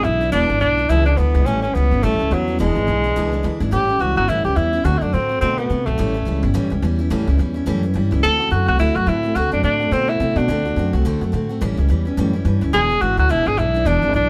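The recording has a live, one-room sound with light reverb, capturing a short cut from a longer rockabilly piece in A major that moves at a rowdy, rollicking 213 BPM in 4/4 with a swung eighth-note feel. Up front, a clear, vintage-toned tenor saxophone carries the melody in a pop-style solo, sliding into its notes with scoops from the first moment to the end at 14.3 seconds. Beneath it, a woody, thumpy upright bass with gut strings is plucked pizzicato and sits prominently in the mix. A bright, full-bodied steel-string acoustic guitar, picked on a dreadnought, fills in the accompaniment a little further back. The harmony rides dominant sevenths, opening on E7 and A7 before a phrase starting at 3.7 seconds reaches D7 and returns home through A7 and E7.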